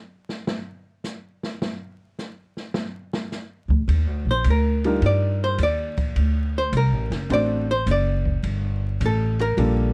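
Small-group swing and bop jazz in G minor at 105 BPM, with a late-night, smoky mood, cut from a longer piece. A drum kit with dark cymbals, a boomy kick and a gritty sampled edge opens with a solo, joined at 3.7 seconds by a woody, thumpy pizzicato upright bass on gut strings, then at 4.3 seconds by a clean, hollow-body archtop guitar carrying the melody up front. A baby grand piano adds natural accompaniment from 4.8 seconds over Ebmaj7, D7 and Gm7 chords, all set in a dark, dry production with vinyl crackle.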